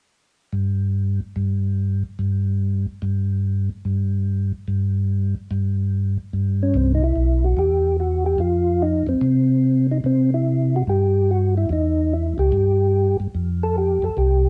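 A flute-like, percussive tonewheel organ with chorus vibrato and slow rotary speaker carries the melody from 6.6 seconds over a round, dark organ bass with key click that has played alone from 0.5 seconds, in a bluesy, swinging jazz excerpt at 145 BPM in 4/4, moving through C and F chords, with moderate studio reverb and heard from further back in the room.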